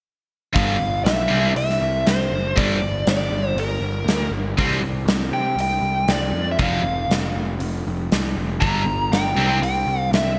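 From 0.5 s, a biting, overdriven lead guitar carries the melody up front over a high-gain distorted guitar riff and a round, dark fuzz bass, before a crunchy background guitar with analog chorus and a huge arena kit with punchy kick and gated reverb join at 0.6 s, driving this heavy hard rock fragment at 119 BPM in G dorian through G5, C, Gm, C5 and F5 chords, all set in a bright 1980s-style digital production with moderate plate reverb.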